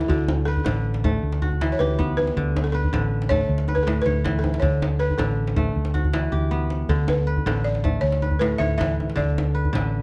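A flowing, joyful West African string and xylophone passage, cut from a longer piece, opens with kora, balafon, electric bass and djembe all sounding together in D major, in 12/8 at 106 BPM counted in dotted quarters with a straight feel. Up front, the fingerpicked kora spins ringing, crisp arpeggios from A2 to C#5, while the balafon carries the melody between F#4 and E5 with a woody, buzzing tone from rubber mallets. Beneath them, a hollow-body short-scale electric bass, played with the fingers, sits up front with a dark, round, amped sound, staying low between A1 and D2. The djembe adds deep percussion with a live-room character and breaks into a fill from 6.3 to 6.9 seconds. Chords cycle through D, Em/D, D5 and A/D, and close, detailed microphones with light reverb give the recording an intimate, clear sound.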